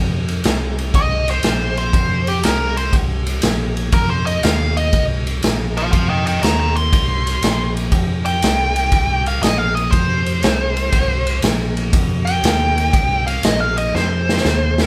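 A blues rock power trio cut with a southern rock streak, this brooding, heavy excerpt swings its eighth notes at 120 BPM in 4/4, sitting on a single C minor chord throughout. The fingered electric bass opens at 0.0 seconds with a bright, growly, amped tone, holding down the low end. A raw garage drum kit joins at 0.3 seconds, its punchy kick, medium-tuned snare and ride cymbal sounding gritty and saturated in a pumping stone room, with a rolled-off top and placed up front. At 1.0 seconds the nasal lead guitar enters, picked and overdriven through a parked wah, carrying a solo high above the rhythm section, also up front. The drums close the clip with a fill from 13.9 seconds, and the whole trio plays together in one room with light reverb, giving it a live feel.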